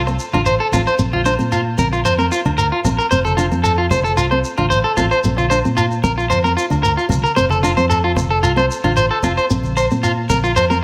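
This highlife guitar band track moves at a straight, danceable 113 BPM in 4/4, its percussion setting a carefree pulse from the first moments: a grainy, mellow shekere, joined by ringing agogo bells and soft-handed congas with a bright, thin-skinned yet low-tuned tone that sit back in the mix. Underneath, a fingered electric bass gives a dark, round and punchy foundation between F1 and Bb2 from the very start at 0.0 seconds. Up front, an electric guitar on the edge of break-up plays picked, twangy arpeggios in the F4 to C5 range, its tone colored by vibrato and a slapback echo. Further back, a fingerpicked nylon-string guitar adds a full-bodied, deep classical accompaniment around C4 to D4. The harmony rocks between F and Bbsus2 in F major, and a moderate plate reverb lends the whole a roomy sheen in this short cut taken from a longer piece, which runs to 10.8 seconds.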